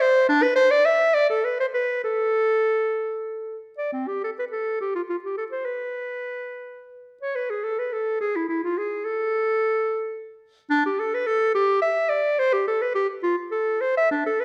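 A classical, baroque-style fantasia for unaccompanied clarinet, solemn and introspective, unfolds in A minor at a rubato 60-73 BPM in 6/8, its clear solo line spanning C4 to E5 and sitting up front in a moderate recital-hall reverb across this 14.4-second excerpt cut from a longer piece.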